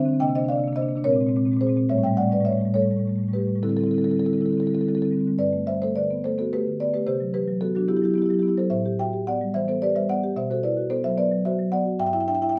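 In a rubato 6/8 lilt at 72 beats per minute, this flowing, warm contemporary classical passage in G major, taken from a longer piece, features a solo marimba played with soft mallets, its woody, round, airy tone sitting up front in light reverb as it ranges from G2 to G5, drifting through chromatic ninth chords such as Cm9, Bbm9 and A9 before settling at 5.4 seconds into Gadd9, Cmaj7#11 and Am9 colours and closing on an open G5 at 12.0 seconds.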